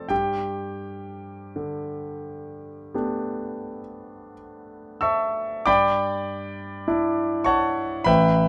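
Classical impressionist solo piano, dreamy and luminous, this brief portion of a longer piece presents a clear concert grand played with free rubato, up front and intimate, with audible action noise, deep bass and long sustain blooming in light reverb as a Gadd9 chord at 0.1 seconds gives way to G69 at 5.7 seconds.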